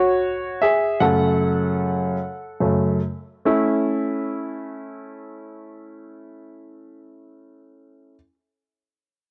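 A clear grand piano carries this brief pop fragment, cut from a longer piece, its present, up-front tone sitting close to the listener in a small home room. The mood is romantic and heartfelt, moving in a slow 6/8 with a straight feel. The piano plays alone through the opening 3.5 seconds, easing into a slowdown over an F-sharp minor chord before the music settles onto A major for the second passage. Its part spans a broad range from low bass notes to the upper register, serving as accompaniment throughout until it stops at 8.1 seconds. Recorded at home on cassette, the sound has a tape-softened, intimate character that frames the clarity of the instrument.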